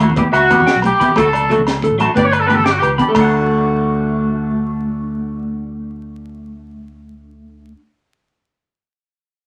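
Two clean, twangy electric guitars open this danceable highlife excerpt at 120 BPM in a straight 12/8, one picking chords through a phaser in the middle register while the other, up front, picks bright arpeggios higher up. A round, fingered electric bass sits underneath in D major, and a tight funk kit with a high-tuned snare joins damped congas tucked in the background. From 0.3 s a clear, punchy horn section takes the lead with light vibrato, carrying the melody over Em, D and G as ringing agogo bells add a metallic pulse. A drum fill at 2.7 s closes the first part, and by 3.2 s the drums, congas, bells and horns have dropped away, leaving the two guitars and bass to carry on over a D chord. Moderate studio ambience and a layer of vinyl crackle give the whole thing a vintage, lived-in sound.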